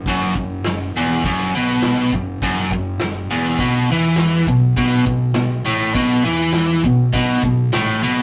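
A fuzzed, picked electric bass opens this gritty, raw garage rock excerpt, sitting low and overdriven in the background of the mix. Almost at once a biting, overdriven electric guitar takes the lead with a picked, double-tracked riff placed up front, its tone loud and dominant over the other parts. A vintage acoustic drum kit keeps a straight 4/4 on hi-hat, a punchy kick and a medium-tuned snare, with a natural studio-room character and a rolled-off top end. The harmony moves from Esus2 to Asus2 at 3.6 seconds, and the drums drop out at 7.9 seconds while guitar and bass carry on to 8.2 seconds. The whole recording has the rough feel of a rehearsal room, with tube saturation and a moderate, short studio ambience.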